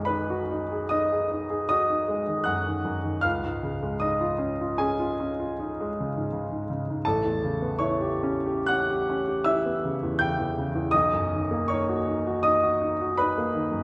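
Heard from further back in a recital hall with a wet reverb that lingers about 1.4 seconds, this cut from a longer piece captures a clear, intimate baby grand piano, its natural tone carrying audible action noise. Alone from 0.0 to 13.8 s, the piano plays a hazy, luminous impressionist passage in B major and 5/4, moving with rubato between 65 and 84 BPM and tuned to A4 = 439 Hz. It ranges from A1 to G6 over chords of B6, C#add9, A9 and Bmaj7, arriving on the final Bmaj7 at 10.9 s.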